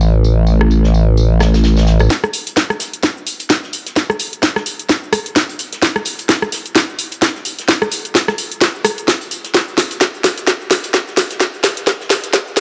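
A nasal, resonant vowel-sweep wobble bass, saturated and sidechain-pumped with chorus, opens this bouncy, aggressive bass house excerpt at 129 BPM with swung sixteenths, over a very quiet loose indie kit of hi-hat, snare and tambourine; an overdriven house kit with a cracking snare, bright hats, rim click and shaker joins up front at 0.6 seconds; and at 2.1 seconds the bass stops as a tight, tape-warm electronic kick enters in the background, while a drum-fill build-up runs to the end in a small room with light reverb.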